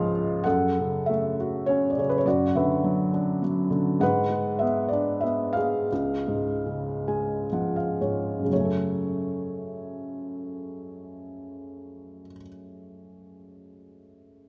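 A felt-muted upright piano sits up front in a moderate concert-hall reverb, its soft, mellow tone intimate and natural, with the action noise clearly audible. This fragment of a longer lyrical classical piece unfolds in a flexible, rubato triple meter, carrying a bittersweet, brooding mood as the solo piano ranges across its low register and the upper middle. The playing slows from 4.0 seconds, with a gentle fill from 6.6 to 8.5 seconds leading into a new passage that runs to the cut at 14.5 seconds.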